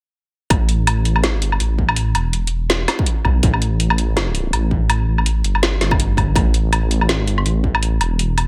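A light reverb gives this cut from a longer half-time drum and bass piece a spacious yet heavy feel, with a swung sixteenth-note groove. Up front, a dark, detuned sawtooth bass rumbles deep and saturated, its beating, sustained tone carrying a tube-driven grit. Alongside it, a layered electronic kit with a woody snare, metallic hi-hats and woodblock sounds from a small room, while a distorted electronic kick plays along from the start until it drops out at 7.7 s.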